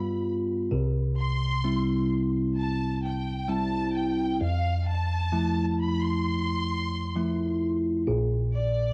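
A bell-like electric piano and a lush bowed violin section enter together at the start of this short pop fragment, cut from a longer piece and tender and hopeful in mood. The electric piano carries the accompaniment from its low register into the middle, sounding bright, clean and direct, with a phaser colouring its tone, and it sits up front in the mix. Above it, the violin section carries the melody in a high register, rich and focused with vibrato and a smooth top, and it sits further back with a cassette-tape character on its sound. The harmony moves from G7 to C, then to Fmaj7 and finally Bb, at an unhurried pace in a straight four. A light, small-room reverb and the feel of a home cassette recording colour the whole fragment through to its end at 8.9 seconds.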